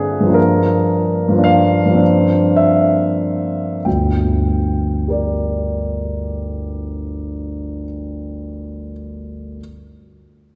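A warm, up-front concert grand piano opens this hazy, wistful impressionist solo passage in G dorian, moving in a slow, rubato 3/4 at 44-63 BPM that slows down through the first 3.9 seconds as Gm7 gives way to Bbadd9/G before settling on Gm, its deep bass and open, long-sustaining tone spanning G1 to G5 and bathed in the wet 3.1-second reverb of a church.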